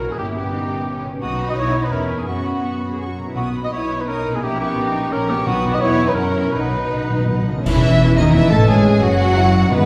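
A fast, dramatic romantic orchestral movement in B major and 3/4, running around 158-177 BPM with a rubato, urgent feel, cut from a longer piece. A clear, intense violin section carries the melody while a mellow, up-front cor anglais sings a second line and a background violin section adds smooth support. Underneath, lush violas fill in the accompaniment, a ringing concert harp plays arpeggios, and focused double basses join cellos with a smooth top on the bass. Timpani struck with hard mallets enter at 3.4 seconds, and a bright cymbal swell, clash cymbals and concert bass drum come in at 5.5 seconds, leading into a timpani fill before a full band accent at 7.7 seconds. There the harmony turns toward C# minor as a clear clarinet, an airy flute ensemble, a mellow horn section holding sustained chords and a roomy bassoon join in. The whole orchestra sits back in a wet scoring-stage reverb, lending the violins a distant sheen.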